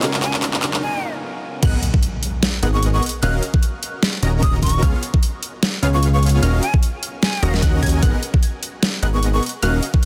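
This dreamy, emotional future bass excerpt opens mid-build-up: a soft, felt-muted upright piano with audible action noise and tape echo, an ethereal pad swept by a filter, a huge compressed supersaw riff and a fat, detuned analog bass, while the dubstep kit plays a fill under a rising sound effect. A breathy jazz flute enters almost at once and carries the melody with vibrato, a crisp chiff and digital delay, floating above the chords. After a brief break, the drop lands at 1.6 seconds with a background impact, a knocking, overdriven electronic kick and a lush, bright unison pluck playing high arpeggios in the background. From there the half-time, swung groove pumps under sidechain, with a deep snare, bright hats, handclaps and crash in the reverb-touched kit, and the chords move through Ebm7, Abm9 and Db7. The mix is dense and heavily limited, with the bass and drums up front.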